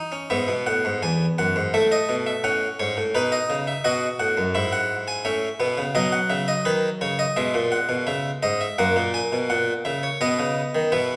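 Set in a straight 4/4 at 85 BPM, this elegant, lively baroque-style three-part fugue in E major moves at an unhurried yet buoyant pace, a short cut from a longer piece. A solo harpsichord in the French style carries everything, sitting up front with an airy, plucked, round tone from a single set of strings, spanning E2 to G#5 across the full 11.2 seconds. Its tuning rests slightly above standard pitch, at A4 = 441 Hz. The harmony travels from E/G# through F#m7/A and B7, returns to E/G#, then passes through B, C#m7 and F# before settling on B at 10.2 seconds. A wet recital-hall reverb with a 1.8-second decay, captured in a church or concert hall, gives the instrument a spacious, resonant setting.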